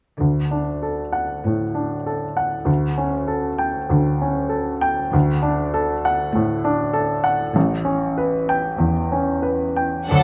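A clear baby grand piano opens this lyrical, lush romantic piece at 0.2 seconds, carrying the melody up front with short sustain, while a warm cello section bows a soft, sul tasto bass line in the background. The rubato phrasing moves over chords from D through A7/D and back to D before an A9, set in the moderate reverb of a recital hall and captured by close, detailed microphones. At 10.1 seconds the upper strings touch in for a moment: a rich violin section on the melody, a dark, smooth-topped second violin line and a viola section filling the accompaniment, each with light vibrato.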